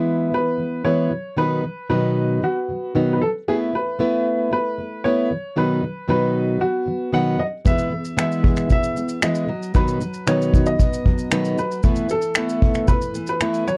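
Sunny and easy-going, this acoustic pop excerpt moves at 115 BPM in a straight 4/4, with a bright, woody upright piano carrying the melody up front over a dark, full-bodied fingerpicked steel-string acoustic guitar that cycles through E, B and Asus2. At 7.7 seconds an unplugged drum kit arrives close and present with finger snaps, a tight kick and shaker, while a classical nylon-string guitar adds soft arpeggios in the background, its finger squeaks audible. Light reverb and the worn, warbly pitch drift of old cassette tape give the whole piece a nostalgic haze.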